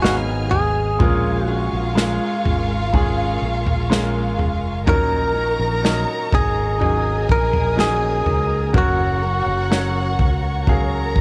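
A tender, emotional pop ballad cut from a longer piece, where a bright, twangy clean electric guitar carries the melody up front over a lush bowed violin section with tape echo, a clear baby grand piano, background strings, a very quiet fingerpicked flamenco guitar, a fretless bass and a punchy, airy country drum kit, all set in a small room with the character of a home cassette recording, moving through G#m7, A#m7, D#m7 and F#maj7.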